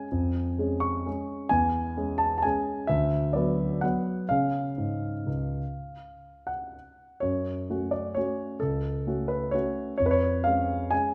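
A rubato waltz in 3/4 at 119-139 BPM, this nostalgic, elegant classical excerpt features a solo warm concert grand piano, up front with deep bass and short sustain, ranging from C#2 to C#6 through moderate recital hall reverb as the harmony moves from C#/E# through C#m/E, Bm/D and C# to F#m before settling back on C#/E# at 10.0 seconds.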